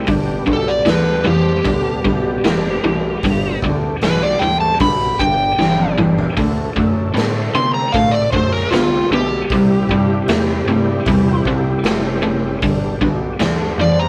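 An overdriven slide guitar sits up front with a fingered melody entering at 0.5 seconds, riding a driving, swaggering blues rock and southern rock groove at 77 BPM in G mixolydian as the chords move from G to D, C and back to G. Beneath it, a double-tracked, picked electric guitar riff and a gritty, saturated synth bass with a resonant filter pluck push the low end, while a raw garage drum kit with a punchy kick and rolled-off top plays a fill from 5.6 to 6.4 seconds. A thick tonewheel organ holds sustained chords in the background through a slow rotary speaker with chorus vibrato, all captured in a rough rehearsal-room recording with moderate reverb.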